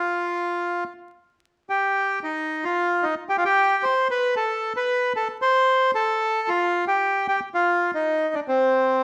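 Rubato in 4/4 around 113 BPM, this dramatic, melancholic tango fragment in C harmonic minor gives the whole 9 seconds to a solo bandoneon, reedy and bright, close-miked and full up front between C4 and C5 with a slapback echo, set in a large studio's reverb under vinyl crackle.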